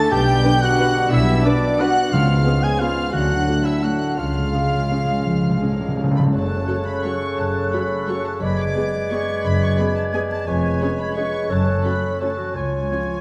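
A floating violin section, bowed sul tasto, carries the melody of this bittersweet, sweeping orchestral ballroom waltz in 3/4 with rubato, cut from a longer piece. Around it, an intimate second violin section, an airy flute ensemble, a bright clarinet and a distant oboe weave second lines, while mellow French horns and background trombones hold sustained chords, the trombones until 6.2 s. A very quiet thumb-plucked harp rings out arpeggios, rich double basses and a close cello section carry the bass, and dark, woody violas accompany. Soft-mallet timpani add a round fill from 4.2 s, a roomy bassoon joins at 6.3 s, and the whole sits in a wet scoring-stage reverb with vinyl crackle.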